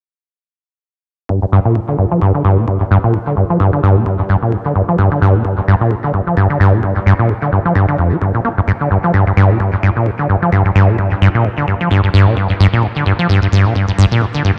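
A squelchy, resonant sawtooth acid bass sits up front in this trippy, hypnotic acid house cut, playing a riff in G minor pentatonic between F2 and Bb3 from 1.3 seconds. Its fast-attack, decaying filter plucks carry a filter sweep, along with subtle chorus, sidechain pumping and tape echo. An analog electronic kick drum with a deep tone stays in the background, shaped by a high-pass filter, and runs until 14.3 seconds. The groove moves at 130 BPM in 4/4 with a light 56% swing on the sixteenths. A lush hall reverb and a dark production give the short fragment, cut from a longer piece, a spacious, immersive feel.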